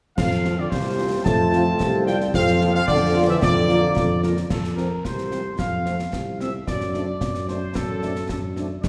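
A straight two-beat march pulse drives this festive, proud passage for wind band, which is cut from a longer piece. A clear trumpet section carries the melody up front, while a tuba with light vibrato holds down the bass just as prominently. Behind them, a distant, roomy euphonium plays a second line, vintage-toned trombones sustain chords until about 4.2 seconds, and a tight French horn section with a smooth top adds accompaniment from 0.5 seconds. The concert snare, clash cymbals and bass drum sound close and dry, with dark cymbals. The ensemble sits further back in a scoring-stage reverb, and once the euphonium drops out at 4.5 seconds, the second section moves from the home chord of F to D7 over F-sharp.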